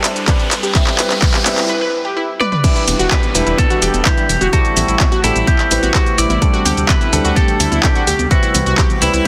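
Progressive house at 127 BPM in E minor, dreamy and driving, where a very quiet morphing wavetable pad, a warbling analog pluck arpeggio with chorus and a filter sweep, intimate grand piano stabs with audible action noise, a pop drum kit with sidechain-pumped hats and cymbals, a punchy electronic kick entering at 0.3 seconds, and faint risers build up through a drum fill and break until a twangy clean electric guitar melody enters at 2.4 seconds and the drop arrives at 2.6 seconds over Em7, Am7, D7sus4 and Cmaj7, with a rumbling detuned saw bass and very quiet congas joining at 2.9 seconds to drive it in this dense, heavily limited excerpt.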